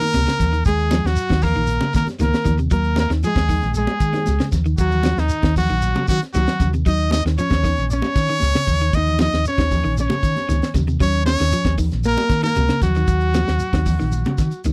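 A brilliant, up-front trumpet carries the melody with vibrato and scooped notes over a driving, hypnotic afrobeat groove, sitting on a single Ebm7 chord for this short excerpt cut from a longer piece. A punchy fingered electric bass enters at 0.2 seconds and joins a tight funk drum kit with a high-tuned snare. Ringing congas and a grainy shekere sit in the background with a dark, hollow-body jazz guitar playing a second line, while a slightly broken-up electric guitar picks arpeggios, all captured in a dry, close 1970s-style studio sound.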